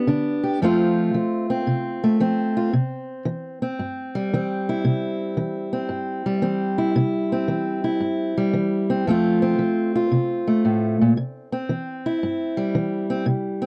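A dark, boxy parlour steel-string acoustic guitar, fingerpicked and up front with light reverb, carries this soulful, gritty blues alone in a swung 4/4, cut from a longer piece and captured in a dry, close 1970s-style studio sound as its chords move from G to F to C, with a second section at 7.0 seconds.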